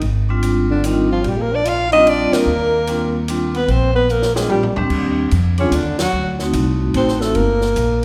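The recording sits in a church or concert hall with a moderate reverb, giving this short cut from a longer jazz piece a spacious, sophisticated glow. It is small-group swing and bop in Eb major, moving in 3/4 at 147 BPM with a lilting swing on the eighths. An up-front alto saxophone carries the melody with a warm vibrato, while a bright, punchy trombone plays a forceful second line with scooped notes and a smooth top. A woody, thumpy pizzicato upright bass sits close and dark beneath them, and a dry, compact cocktail kit with dark cymbals, a high-tuned snare and a tight kick keeps time at a lower level. A metallic, ringing vibraphone with a slow motor vibrato and an airy shimmer comprises the accompaniment from 0.3 to 7.4 seconds. The band hits two accents together, and the drums play a fill from 4.1 seconds that leads into the second section.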